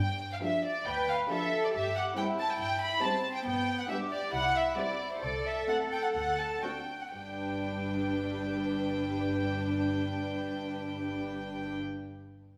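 Quick, cheerful classical-period string orchestra writing in a spirited mood, cut from a longer piece, with an up-front violin section carrying a pure, floating melody while the chamber violins add an intimate second line above a dark, woody viola accompaniment. A rich cello section enters at 0.9 seconds to join the double basses on the bass, all bowed sul tasto in a reverberant recital hall. The pace slows between 2.6 and 7.1 seconds before a new section begins at 7.1 seconds.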